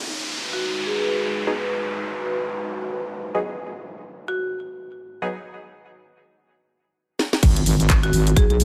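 Aggressive and bouncy, this swung bass house excerpt opens on a dark analog pad with chorus and phaser and a downlifter, soon joined by brief woody marimba phrases with delay and a nasal, band-passed chord stab under a filter sweep. A garage kit with a cracking snare, handclaps, hi-hat, shaker and crash enters with a drum fill at 7.2 s, leading to the drop at 7.4 s, where an impact lands, a tight, up-front electronic kick comes in, and a heavy, saturated wobble bass pumps with sidechain compression.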